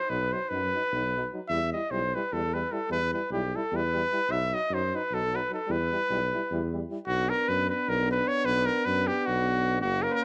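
A warm, classical-style trumpet leads up front in this restless, fiery Balkan brass band fragment, cut from a longer piece. It rides a brisk 7/8 pulse at 301 BPM in eighths with a straight feel, moving between B and E minor harmonies in E harmonic minor before shifting to B minor and B harmonic minor at 7.1 seconds. Beneath it, a mellow tuba carries the bass while a smooth-topped trombone and a clear, distant euphonium, both with light vibrato, sit in the background as accompaniment, all wrapped in a light studio reverb.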